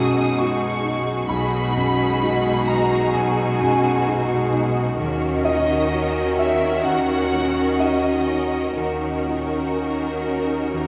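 From the first moment a full orchestral texture sounds at once, tender and hopeful in a slow, rubato cinematic sway: a lush, vibrato-rich violin section carries the melody over a smooth second violin line, a clear, open concert grand piano with deep bass accompanies alongside a smooth, bowed viola section, mellow French horns hold distant sustained chords, and a dark, woody double bass section joins the cellos underneath, all set in a wet scoring-stage reverb heard from further back in the hall as the harmony moves to a new chord at 5.0 seconds in this brief passage cut from a longer piece.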